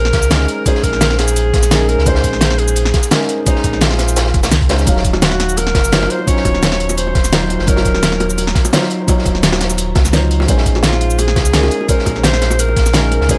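Lush and melancholic, this liquid drum and bass passage moves at 171 BPM in a straight 4/4, set in Eb dorian and cut from a longer piece. A mellow alto saxophone carries the melody with classical-style vibrato, its solo line trailing dub echo. A felt-muted upright piano plays a soft, dark, intimate accompaniment beneath it, also soaked in dub echo, while a deep sine-and-triangle sub bass with an octave layer sits up front with a fast attack and sustained notes. The drums stack three layers: a knocking, tape-warm electronic kick, an up-front pop kit with a fat snare, crisp hats and cabasa, and a gritty, saturated breakbeat kit whose filtered hats, snare and room carry a rolled-off top and their own dub echo. Round, low-tuned bongos played with soft hands enter very quietly at 4.9 seconds. The harmony moves from Bbm11 to Ebm9 at 4.9 seconds and back to Bbm11 at 10.5 seconds, all within an echo-heavy mix with light small-room reverb.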